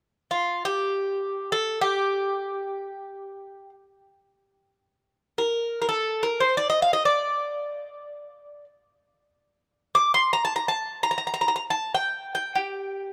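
A rough home-demo sound with a light small-room reverb frames this melancholic, dark Greek folk excerpt, where an up-front acoustic bouzouki carries the melody from 0.3 to 13.1 seconds, its picked double strings ringing metallic with some octave-doubled courses.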